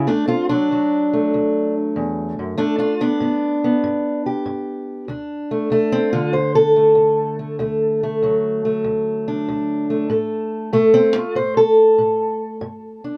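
A dark, boxy fingerpicked steel-string parlour guitar plays alone and up front for 13.2 seconds in this soulful, gritty acoustic country blues fragment, swinging at 96 BPM in 4/4 in D major as it moves from D to G and back to D, steps away from chords at 10.1 seconds and lands on G5 at 12.6 seconds, all set in a short, moderate booth ambience.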